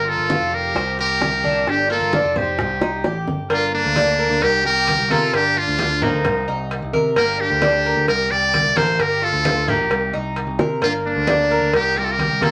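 Nostalgic and sultry, this Cuban son and guajira excerpt puts a buzzy, forceful muted trumpet up front on the melody over a clear, biting chamber violin section in the background, metallic double-stringed tres arpeggios, a punchy picked electric bass, thin-skinned congas, and round, dry bongos and cowbell, with a drum fill at 2.8 seconds leading into a second section at 3.5 seconds, all in a moderate studio ambience.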